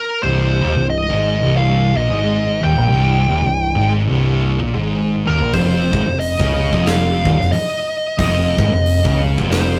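The fuzz lead guitar stands out from the first moment, its dark, wah-filtered melody sitting up front in a high register above a slow, ominous stoner and doom metal groove at 90 BPM in 4/4 with a swung feel. Beneath it, two thick fuzz guitars enter at 0.2 seconds with a low, sludgy riff in C phrygian, one pushed into the background while the other carries a warmer distortion. A growling picked electric bass fills the low end with a warm, direct and amped overdrive. The harmony moves from C minor to an F power chord at 5.5 seconds, the same moment a big, natural-sounding acoustic drum kit arrives with a punchy kick, medium-tuned snare and hi-hat in a roomy space. The whole piece has the rough, tube-saturated character of a rehearsal-room recording with moderate reverb, and it is cut from a longer piece.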